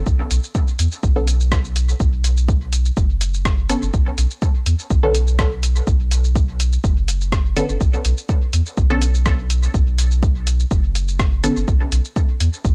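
This cavernous, meditative dub techno excerpt opens on a round, soft sub bass pumping with transformer saturation, joined at once by an overdriven, up-front kick and a muffled, tape-warm sampler kit of hi-hat, rim click and shaker, while from 1.2 seconds a detuned, wave-folded chord stab rides phaser and dub echo over a single Bm9 chord in a dry, gritty hardware sound.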